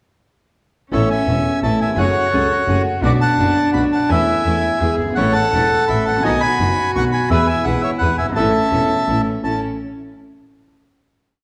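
A tango in waltz time with the accent on one, this short, complete piece moves at 169 BPM in 3/4 with a rubato feel in A major, passionate and nostalgic in mood. Up front, a reedy, dark bandoneon carries a motif-based melody partly doubled in thirds, while a bowed cello played sul tasto floats a pure, smooth counter-melody beneath it. A woody, boxy upright piano with audible action noise, a rich, distant bowed double bass and a very quiet, lush studio string section with focused stabs keep the waltz pulse, all in a recital-hall reverb, before the music settles on a final chord at 9.4 seconds.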